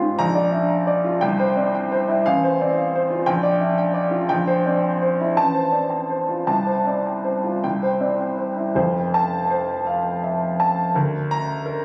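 A warm grand piano sits up front, present and warm with long sustain, carrying this brief passage from a longer romantic character piece in F major, played alone in 6/8 at roughly 52-59 dotted-quarter beats per minute with free, breathing rubato. The mood is passionate and hopeful as the harmony moves through Bb, C, F/A, Gm7/Bb and C7/Bb before settling on F at 8.8 seconds, where a new section begins and turns toward Bb/D near 10.9 seconds. Captured on a phone in the room, the piano is surrounded by moderate recital-hall reverb.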